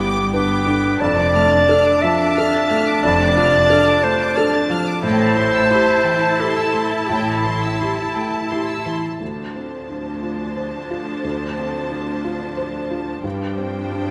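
A rubato 3/4 pulse at 89 BPM carries this longing, sorrowful cinematic film score excerpt in D dorian, where a clear violin section sings the melody until 9.0 s over a lush second violin line, an up-front clarinet counterline that ends at 8.5 s, distant viola accompaniment and a soft, felt-muted upright piano with audible action noise, while intense cellos and a smooth double bass section, gone by 7.7 s, anchor the bass in the background of a moderate scoring-stage reverb.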